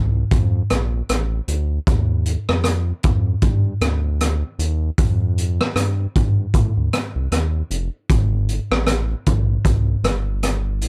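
Lonely and mellow, this short indie and bedroom pop cut in G minor moves at an unhurried 77 BPM with a lazy 16th-note swing. A round analog bass plays from the start, deep and evolving with ring modulation, while a raw garage drum kit of hi-hat, boomy kick and rim click enters at 0.3 seconds, gritty, saturated and up front in a small room, all set in a dark, dry production.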